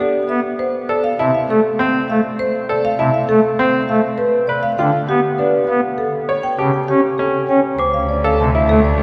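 Meditative and hypnotic, this minimalist classical pattern music at 100 BPM in 3/4 and D dorian sets a woody, dark rosewood marimba melody over brilliant, worn grand piano arpeggios and a thick, romantically voiced pipe organ on foundation stops entering at 0.3 s, moving through E7, Dm7, G7 and A7 until a mellow, bell-like glockenspiel and a rich, focused bowed cello with vibrato join at 7.8 s on Dm7, all bathed in a long, wet cathedral reverb.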